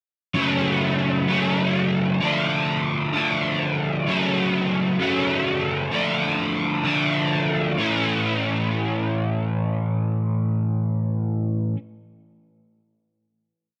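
Trippy and hazy, this short rock piece features a lone crunchy, overdriven electric guitar, double-tracked and up front with a flanger, picking ringing chords that sway between F#m and Dm before landing on a final A chord at 7.8 seconds, set in a light digital reverb.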